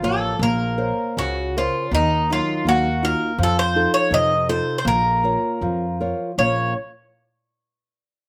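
Longing and passionate, this short fragment of a fado-style ballad moves at 81 BPM in 2/4 with a rubato feel, set in Bb harmonic minor over a Bbmadd9, Ebmadd9, F7 and Bbm progression. A picked Irish bouzouki carries the melody up front, its metallic double strings touched by slapback echo, while a small, warm, fingerpicked nylon-string guitar accompanies close beside it and a pizzicato upright bass adds a woody, thumpy low end. All three play together from the start until 6.7 seconds, and the sound is dry and open, captured outdoors.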